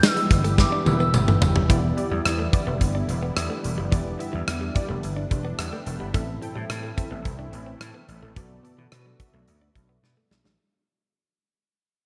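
Dramatic and nostalgic, this 1980s-style pop piece in E minor moves at 108 BPM and opens with a hollow, woody clarinet-like synth lead, soft and sustained with vibrato, chorus and delay, that sings only for the first 1.4 s alongside a brief jingly tambourine and a drum fill before a fade-out begins at 1.7 s. A big rock kit drenched in gated reverb sits up front over punchy, amped slap bass, round, detuned sawtooth analog keys with a filter sweep, and an airy, evolving pad with a filter swell in the background, while a clean, picked electric guitar riff recorded direct shimmers with lush chorus and delay. Bright digital production and plate reverb frame a progression from Em7 to Am and Bm7.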